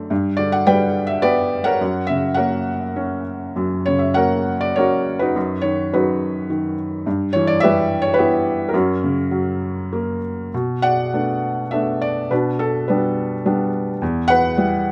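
A felt-muted upright piano plays alone, soft and intimate with a short, thin-felt sustain, in this brooding, lyrical classical excerpt in B minor and 3/4, moving with rubato at roughly 94-110 BPM through chords such as G, F# and B/F# before a new section opens on Bm7 at 10.5 seconds, all captured up front by close, detailed microphones in light reverb.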